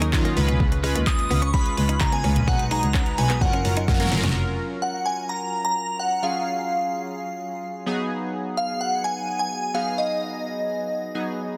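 A dreamy FM bell leads this summery, upbeat dance-pop clip at 128 BPM in F# major, its detuned, full-bodied tone shimmering up front through ensemble chorus and delay as it carries the melody high in the mix. Beneath it, glossy retro synth keys built from detuned pulse and sawtooth waves open with a short fill, then pump against the sidechain with filter sweeps and pulse-width modulation. A smooth, bowed double bass with vibrato and a twangy, picked clean electric guitar, set back under subtle chorus, play from the very start alongside a deep house kit of deep kick, fat snare, handclaps and hi-hat in the opening stretch. The drums close that passage with a fill from 3.9 s, and the bass, guitar and kit all stop by 4.4 s. From there the bell and keys carry on alone, drifting from F#maj7 to G#m7 until the clip cuts off at 11.6 s. The light reverb and dense, heavily limited master keep the sound polished and punchy.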